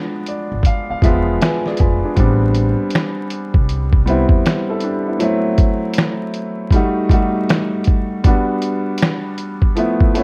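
A relaxed, swung pulse in 4/4 carries this nostalgic, hazy lo-fi hip hop excerpt, cut from a longer piece. An up-front upright piano, clear and vintage with long sustain and softened by a low-pass filter, opens with a fill over the first 2.2 seconds, then moves through jazzy harmony from E7b9 to Am11, F#m7b5, D#dim and finally Gmaj7. A sampler-style drum kit enters at 0.3 seconds with a thumpy kick, fat snare, hi-hat and finger snaps, its compressed, muffled, tape-warm sound also sitting close and prominent. A woody, pizzicato upright bass joins at 0.5 seconds and drops out at 4.4 seconds. Light studio reverb, a dark, warm production and a bed of vinyl crackle give the whole track its hazy atmosphere.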